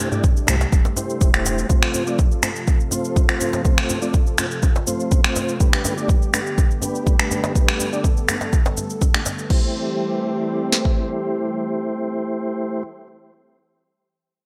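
A straight 4/4 afro house groove at 123 BPM drives this earthy, spiritual excerpt in A minor, built on an up-front, tape-tinged electronic kit with a deep kick and sharp snare, plus crash, finger snaps, shaker and toms under gated reverb, while a soft-handed acoustic djembe sits close and dry in the background. A round sine sub bass pumps briefly from 0.5 s, and a mellow, flute-like tonewheel organ plays filtered, delayed stabs with chorus vibrato and key click, its filter sweeping through the opening, over a smooth, detuned sawtooth pad whose sustained chords pump with the sidechain across Am7, F and Gadd9. The djembe drops out at 9.4 s and the kick and snare carry on to 11.0 s, leaving organ and pad to close the bright, lightly reverberant 1980s-style digital mix.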